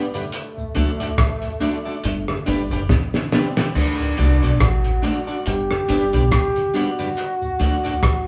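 Roots reggae at a relaxed 70 BPM in D mixolydian, with a sunny, uplifting mood and a swung sixteenth-note feel, moving between D and G in this short excerpt from a longer piece. A distant, vibrato-laden trombone carries the melody over a slightly broken-up, picked electric guitar with spring reverb, a soft, flute-like tonewheel organ through a slow rotary speaker in the background, and a faint cabasa. Up front sit a muffled, cloth-damped drum kit with a fat snare, tight kick and dark cymbals, which plays a fill from 2.9 to 3.7 s, and a round, punchy dub bass that enters at 0.8 s, with the band playing live together in a small room bathed in wet reverb.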